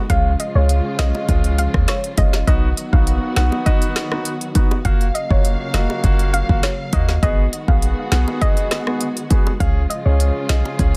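A straight, bouncy dancehall groove in 4/4 comes from an up-front electronic drum kit with a deep kick, woody snare, crisp hats and rim clicks, joined at 1.0 s by tight, high-tuned bongos sitting dry in the background. A boomy 808-style bass anchors the low end under a warm grand piano accompaniment and dark, lush bowed strings with vibrato and sidechain pumping, as the harmony moves from C# through B, F#maj7 and G#m7 back to C#. On top, a soft, round pluck carries a gentle, summery melody coloured by chorus and delay, all within a dense, heavily limited modern mix cut from a longer piece.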